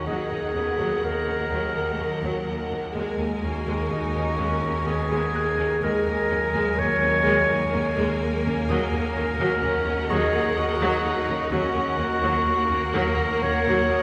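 Tense and ominous, this slow cinematic excerpt in 3/4 at 63 BPM rests on a single Eb minor seventh chord, with an up-front, vintage-toned solo clarinet carrying a second line beneath a lush, vibrato-rich symphonic violin section that holds the high melody. A focused chamber viola section fills the middle, while a distant cello section and a close double bass section, both bowed with vibrato, sit in the background alongside a bright, string-like sawtooth drone with its own reverb on a low Eb. A very quiet fingerpicked concert harp adds a ringing texture up high, all washed in a cavernous cathedral reverb.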